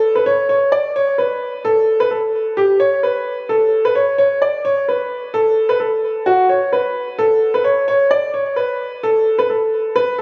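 This hip hop excerpt feels triumphant and dreamy, moving at 130 BPM in 4/4 with a half-time feel. A concert grand piano plays alone for the full 10.2 seconds, sitting up front between F#4 and D5 with a warm, boxy tone, deep bass, long sustain and delay. The sound carries light reverb, small room ambience and a club reverb, with compression and the character of a phone recording made in the room.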